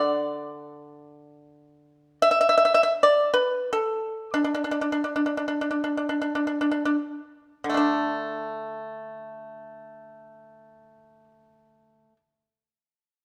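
A solo pipa opens this serene, elegant piece of Chinese traditional music, its plucked strings sitting up front with a warm, percussive attack from the fingerpicks. The playing moves in free time, unhurried and graceful, spanning a range from D3 up to E5. Between 2.4 and 7.8 seconds the pace gradually slows, and a new passage begins at 7.8 seconds before the instrument falls silent at 12.2 seconds. The pipa's own tone is dry and close, yet it rings into a moderate stage reverb with a decay of about 1.5 seconds that lends the solo a sense of calm space. Tuned to A4 = 441 Hz, this short passage is cut from a longer work.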